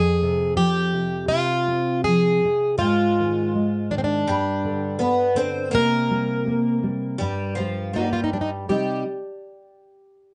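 A fingerpicked, plugged-in twelve-string acoustic guitar carries the melody up front in this passionate, longing fado-style ballad, its octave-doubled tone shimmering with an auditorium-like glow over a rubato feel. A dark, full-bodied nylon-string guitar, thumb-plucked in a deep classical manner, supports it with accompaniment from the start, and at 2.8 s a boxy, archtop-flavoured picked twelve-string joins with a second line in lush chorus, finger squeaks audible. The short excerpt sits in a wet small room, with its top end stopping at 10.4 kHz.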